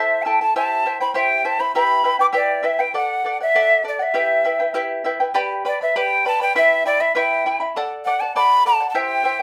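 A hollow, end-blown cane quena carries the melody up front in this short Andean folk excerpt. Its airy tone has a crisp, chiffy attack, vibrato and lifted highs. Beneath it, an acoustic charango plays accompaniment throughout, also up front, fingerpicked on double strings, some of them octave-doubled, for a shimmering texture. The mood is festive yet melancholic, moving in a straight 2/4 over chords such as Am, C, Em and D. A second section arrives at 5.3 s, turning the harmony to G before moving through Em and D. A moderate studio reverb surrounds both instruments, with the charango's warm strings supporting the quena's cane voice.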